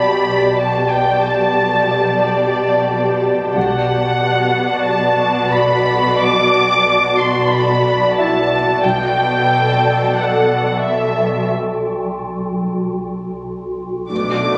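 Mysterious and ominous, this cinematic passage in free time, cut from a longer piece, sets a veiled, con sordino violin section singing a vibrato melody over an airy, ethereal pad with ensemble chorus, a lush muted cello section holding B2, and a swarming, detuned drone on B1, while a brilliant grand piano adds a very quiet texture with audible action noise. A muted double bass section surfaces briefly in the background near 3.5 and 8.8 seconds as the harmony moves from Gadd9/B to Bm7 and back. After the melody stops at 11.5 seconds, a break follows, and at 14.1 seconds muted viola and high violin sections enter, all heard through a phone recording of a scoring-stage space with club reverb and compression.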